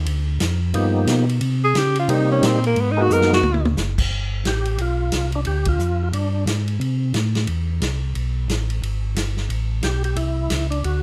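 Lightly reverberant and intimate, this soulful, swinging soul jazz organ trio fragment sets a dark, round tonewheel organ bass with slow rotary speaker and key click under a punchy small-room vintage drum kit, while a percussive, lightly overdriven second organ carries the melody with chorus vibrato and a breathy, close-miked tenor saxophone steps forward with scooped subtone notes at 1.6 seconds, ahead of a drum fill at 3.1 seconds and a band accent at 5.6 seconds.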